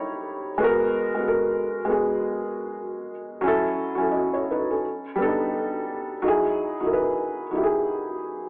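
A felt-muted upright piano carries this short hip hop fragment alone from start to finish, its thick felt giving every note a soft, dark, short-lived tone that sits up front and close. The mood is nostalgic and dreamy, with a relaxed swing on the sixteenths lending the pulse a gently lilting feel. The piano moves through rich jazz harmony, starting on D#7b9 and settling onto G#m9, then passing through F#m7 and B7alt before resting on Emaj9 near 6.2 seconds. Cassette tape coloring and a low-pass filter dull the piano's upper edge, while the whole recording carries a lo-fi AM radio character and a moderate spring reverb that lingers for about 2.0 seconds. Cut from a longer piece, the fragment feels intimate and hazy, like a memory heard through an old speaker.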